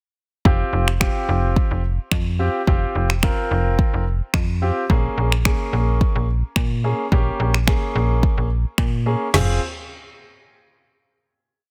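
A four-on-the-floor deep house beat at 108 BPM drives this short, confident yet bittersweet dance-pop piece in F minor, its deep kick and woody, softly clipped snare joined by finger snaps, toms and a crash cymbal. A snappy FM bass with a metallic attack plays a syncopated figure, while a clear concert grand piano with audible action noise pushes close-voiced chords through Fsus2 and Bbm7; both pump against the sidechain. The mix is dry, dense and heavily limited, with all three parts up front from 0.5 seconds, before a final Fm chord arrives at 9.3 seconds.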